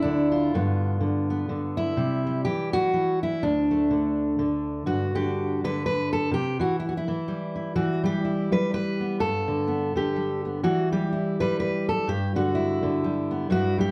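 Heard through a wet studio reverb from further back in the room, this peaceful folk excerpt features a solo fingerpicked steel-string dreadnought guitar, dark and full-bodied yet up front, playing in a swung 3/4 at 125 BPM over chords like G7, C, Em and G.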